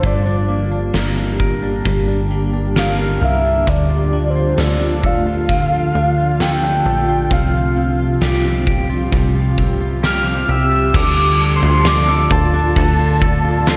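A haunting, melancholic slice of dream pop opens with everything at once: a shimmering, ethereal pad sustains dark, detuned chords under a round, mellow octave-layered synth lead, whose melody carries chorus, digital delay and slapback echo. A clean, twangy electric guitar picks arpeggios through subtle chorus and delay, while a plucky, wave-folded analog bass plays alongside an oversized low-tuned drum kit that sits gritty and up front, with its fat snare, punchy kick, dark cymbals and tambourine. The chords move from Gm through Dm and Csus4 before a new section begins on Dm at 10.9 seconds, all inside a wet, big arena-like reverb.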